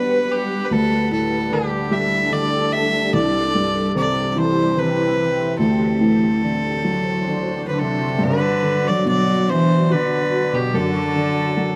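A nasal, earthy bowed fiddle sings a tender, pastoral Celtic slow air in a free-flowing rubato three, over a felt-muted upright piano with soft, intimate accompaniment and audible action noise and a shimmering, ethereal pad coloured by chorus and phaser, before a biting, smooth-topped cello adds a second line at 7.7 s, the band playing live together in one room bathed in wet studio reverb.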